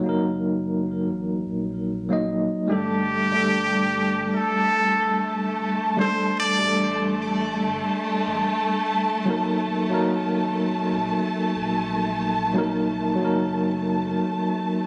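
Captured on a phone in a small room with light reverb, this brooding, melancholic trip hop fragment at 73 BPM rests on a clean tine electric piano with tremolo and tape echo over a round, tube-saturated sub bass in the background, while from 2.7 s a lush, dark violin section adds sustained chords with portamento and a nasal straight-muted trumpet sings a jazz-style solo of scooped, vibrato-laden notes through tape echo until 7.2 s, all moving from Ebm to Gsus2 and back.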